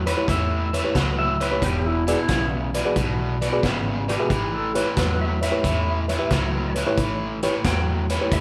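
A swung 4/4 shuffle drives this swaggering, gritty electric blues fragment, with a crunchy, tight-kicked drum kit with a dark, rolled-off top and a round, punchy muted bass anchoring a bright, up-front overdriven guitar riff pulsing with harmonic tremolo. Above them a clean, twangy lap steel takes a slide solo full of volume swells, while a reedy electric piano fills in the accompaniment over A9 and E9 chords. The band sounds as if it is playing live in one large studio room, bathed in a lush reverb.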